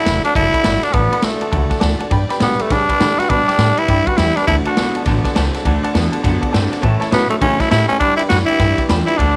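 A raspy, growling tenor saxophone leads this rollicking, retro rockabilly piece at a swung 204 BPM in D major, dropping out at 5.0 seconds and returning at 7.1, over thumpy, woody pizzicato upright bass, a vintage drum kit of punchy kick, snare and ride, a bright, short-sustain upright piano and a full-bodied picked steel-string acoustic guitar in the background, while a twangy, slightly broken-up electric guitar riff through a small old amp with analog chorus enters at 4.5 seconds, the whole set in a lightly reverberant studio room.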